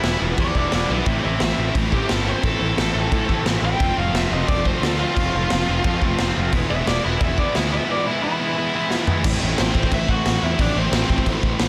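Driven by a straight 4/4 pulse at 176 BPM from a raw garage drum kit that sits up front with a punchy kick, medium-tuned snare, gritty saturation and a rolled-off top in a bright stone room, this urgent, aggressive punk rock excerpt pairs a growly fuzz-picked electric bass with two picked, distorted rhythm guitars riffing in the background, one of them compressed and stopping at 9.2 s. Meanwhile an overdriven lead guitar with digital delay solos over Em, Am, F and E until 9.2 s, where a drum fill starting at 8.9 s leads the harmony back to Am, and its melody carries on to 11.2 s in a dense, dry, heavily limited mix.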